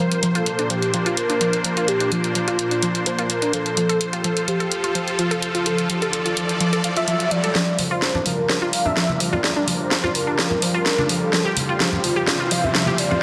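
A lush hall reverb and a dense, heavily limited modern master frame this dreamy, expansive progressive house excerpt in G dorian, moving at 127 BPM in a straight 4/4. A velvety synth lead carries the melody with a mellow, vibrato-touched tone thickened by chorus and tape echo. Beneath it, a glassy wavetable pluck spins crystalline arpeggios through chorus, cassette tape and dub echo, while a detuned supersaw pad holds sustained chords with a slow attack, a sub octave and a low-pass filter. An up-front house drum kit with a cracking, layered snare and hi-hat drives the groove over a Bbadd9 to F progression. A very quiet riser enters at 5.4 seconds, and from 7.6 seconds the harmony shifts to Gm7 and Csus4 as a build-up begins, with a drum fill and a filter sweep on the supersaw pad. Ringing acoustic congas, struck with hard hands and set back in a large room, join at 7.8 seconds.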